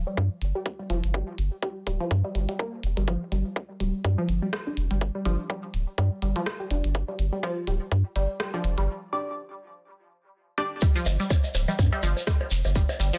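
Minimal techno at 124 BPM with a light 16th-note swing, this sparse, hypnotic excerpt from a longer piece opens on a round, nasal analog bass, an up-front tight electronic kick, and a clicky, overdriven hi-hat and rim-click kit, while a squelchy resonant blip pluck with phaser, sidechain pumping and dub echo plays a riff as a filter sweep on a synth arpeggio sound runs through the build-up. At 4.7 seconds a muted, evolving dub chord stab arrives, bathed in phaser, lush chorus and digital delay, carrying through a break that starts at 8.9 seconds. At the drop at 10.8 seconds a grainy, mellow shekere joins overdriven woodblock, bongos, congas and cowbell with digital delay, all set in a moderate studio reverb under a dense, heavily limited master.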